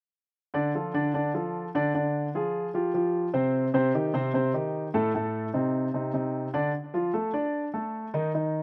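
Jazz with a sunny, sophisticated mood, played at a brisk pace in a straight 4/4 feel, cut from a longer piece. A warm baby grand piano carries it alone from 0.5 to 8.6 seconds, its natural tone sitting up front and ranging from A2 to D5. The harmony moves through Dm, Ddim, Csus4, Cm and Adim before settling back on Dm as a new section begins at 6.7 seconds. Light reverb gives the piano a touch of air, while the outdoor setting leaves the sound open and dry of any room.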